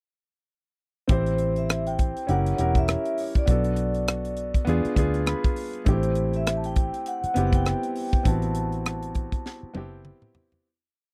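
Cinematic and bittersweet, this short, lush 1970s-style soul piece sets a mellow, ringing vibraphone with a slow motor vibrato floating a free melody over clear concert grand piano pushing rootless chords through an Am7 to Am9 progression with a short fill at 5.0 seconds, a dark, round, foam-muted electric bass laying down a melodic line with ghost notes, and a tight funk drum kit with a high-tuned snare, all captured in a dry, close studio sound before a fade-out from 8.3 seconds and a closing drum fill.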